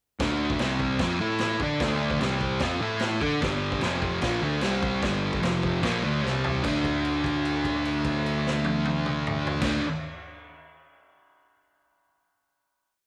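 A thick, double-tracked fuzz guitar, a fuzzed and overdriven picked electric bass and a raw garage drum kit all kick in together at 0.2 seconds, launching a menacing, swaggering garage rock piece in D minor at 149 BPM in a straight 4/4. The guitar sits up front with a distorted power-chord riff built on a chain of D5, C5, F5 and A5 shapes, later moving through G5 and Bbmaj7, while the bass doubles that riff in driving eighth notes with a warm, direct and amped edge. The drums sound like an acoustic kit in a small room, with a boomy kick, a medium-tuned snare, toms and crash cymbal, their saturated tone and rolled-off top pushing a stomping garage groove. A drum fill at 6.2 seconds sets up a final D5 chord that the band holds from 6.7 seconds until the piece closes. Light reverb gives the short, complete track a compact, raw sense of space.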